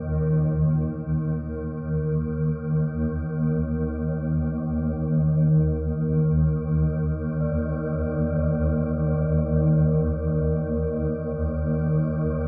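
A swarming, detuned drone on Eb sits up front from the very start, its granular, sine-based unison tones slowly evolving with a tense, desolate edge in free time. Just behind it, a very quiet quartz singing bowl struck with a wooden striker rings a pure Eb5 at 0.1 seconds, adding meditative, slowly beating overtones. The dark ambient piece, cut from a longer work, is bathed in a long cathedral reverb, giving the whole 12.5 seconds a cavernous, shadowy atmosphere.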